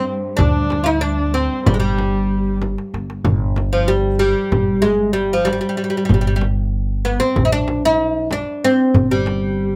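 A bright, woody fretless oud leads this stately Turkish makam piece in 9/8, its plectrum-plucked double strings deep and up front, cut from a longer piece. A smooth bowed kamancheh with vibrato adds a second line until 2.6 seconds, while a muted, veiled cello section holds a dark drone in the background until 3.3 seconds. A thumpy pizzicato upright bass and a close, dry clay darbuka and small frame drum carry the groove, with a drum fill from 2.6 to 3.3 seconds, all in a lightly reverberant, detailed recording.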